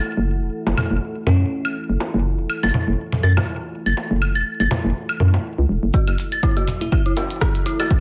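A swung 16th-note groove at 122 BPM in 4/4 drives this cool, quirky minimal techno passage in F# minor, cut from a longer piece and resting on an F#m7 chord. A deep, moody ambient pad with a slow attack and long release breathes under sidechain pumping, while a hollow, bouncy FM bass sits up front with tube saturation. Layered bongos, congas, woodblock and claves, tape-warm and carrying delay, join at 0.7 seconds. A sparkling, bell-like FM electric piano makes two brief appearances, the first at 1.3 seconds. The build-up from 5.9 seconds brings a punchy analog kick, grainy close maracas, a clicky minimal kit with hi-hat and rim click, and an eerie, inharmonic detuned synth bell riff with tremolo and a filter sweep. The mix is dry and intimate, with little reverb.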